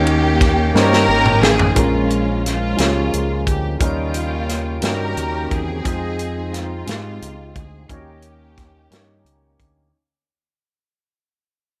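A light reverb frames this short, uplifting cut from a slow gospel piece in 6/8 at 59 BPM, where a lush, bowed string section carries the hopeful melody up front over a woody upright piano with long sustain and a round, punchy fingered electric bass. Behind them a fat, lightly overdriven tonewheel organ holds sustained chords through a slow rotary speaker and chorus vibrato, with key click and third-harmonic percussion, while a tight funk kit with a medium-tuned snare and rolled-off top plays a fill from 0.8 to 1.8 seconds. From 1.8 seconds the music moves through Bbm7, Eb7 and Fm7 chords as it fades out until the end at 9.9 seconds.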